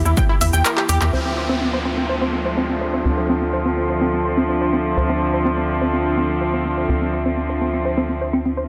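Melodic techno with a driving, melancholic pull, this excerpt sets an up-front chamber string section playing reedy, gut-string sustained chords against a punchy sawtooth sequencer bass, a nasal, detuned sequenced synth arpeggio coloured by chorus, cassette tape grit and dub echo, and a warbling, lo-fi pad sitting dark in the background, with sidechain pumping on these parts. An overdriven, layered deep house kit of claves, handclaps, hi-hat and shaker drives underneath, and after a drum fill at 0.8 s and a band accent, the harmony moves from Edim to Dm7 as filter sweeps run through the strings and arpeggio and an electronic downlifter sounds from 1.1 to 5.0 s. A huge ambient reverb and a dense, heavily limited modern master give the whole track its size.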